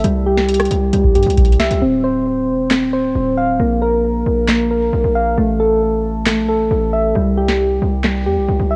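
Dark, melancholic half-time trap at 135 BPM in an excerpt from a longer piece, where round, chorused electric-piano-like synth keys play filtered arpeggios with analog delay over a saturated, aggressive 808-style bass and a booming analog drum machine with a deep kick, crisp snare, metallic hats, handclaps and rim clicks; over C, a drum fill at 0.9 s leads into a break at 1.8 s that moves through Dm7, Bb5 and A5 and back to C, the drums drop out at 8.1 s, and the whole carries the light reverb of a home cassette recording.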